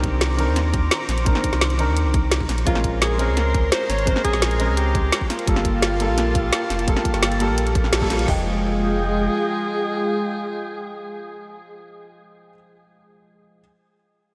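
A lush, soulful liquid drum and bass excerpt opens with tight electronic kick, woody snare and bright hats, a deep, round sub bass, a thick, warbling chorused pad and a delay-touched grand piano, while a mellow alto saxophone with vibrato and scooped notes carries the melody from 2.7 seconds; the drums fall away at 8.4 seconds after a band accent, the sub bass fades by 9.3 seconds, and once the pad and saxophone end at 11.8 seconds the piano rings on alone until 13.6 seconds in a dreamy, reverb-soaked mix.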